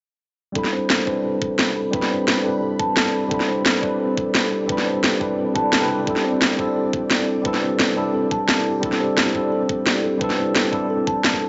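At 174 BPM in a straight 4/4, electronic drums set a rolling liquid drum and bass pulse, with a cracking, layered snare sitting up front over a knocking kick, both re-recorded in a small room. This dreamy passage in A minor, cut from a longer piece, rests on a single Am11 chord. A worn, slightly out-of-tune tine electric piano carries the accompaniment from 0.5 seconds, lightly overdriven as if through built-in speakers, with digital delay and a filter sweep shaping its tone. A woody, hollow-box kalimba joins at 0.6 seconds with soft, ringing arpeggios, also treated with delay and its own filter sweep. From 1.5 seconds an ethereal, very quiet pad of detuned sawtooth and triangle layers with a noise element adds slow-attack sustained chords, thickened by ensemble chorus. A moderate plate reverb gives the mix a gentle sense of space, and the top end is rolled off for a soft, dusky finish.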